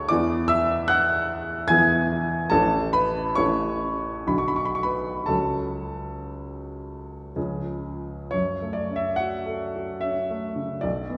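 Yearning and wistful, this short excerpt from a romantic nocturne for solo baby grand piano drifts in 3/4 with a free rubato feel around 56-77 BPM in F# minor, its smooth, vintage tone sitting up front despite a distant vantage in a scoring stage bathed in a two-second reverb, as the harmony moves from E through A, Bm and C# before settling on F#m at 8.3 seconds.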